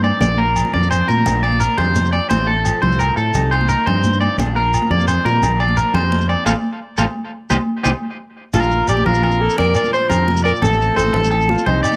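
A joyful highlife guitar band groove in 12/8 at 115 BPM in Bb major opens with a twangy, slightly broken-up electric guitar playing arpeggios up front through tape echo, a bright clean guitar with lush chorus comping in the background, a dark, punchy fingered bass, and ringing agogo bells, soon joined by distant, high-tuned congas and a grainy, close shekere. The band hits an accent together before a clear alto saxophone enters at 8.5 seconds for a jazz-style solo with light vibrato, subtone and scooped notes over the cycling Bb, F/A and Cm chords. The home cassette recording has light reverb and lossy artefacts that give this cut from a longer piece a warm glow.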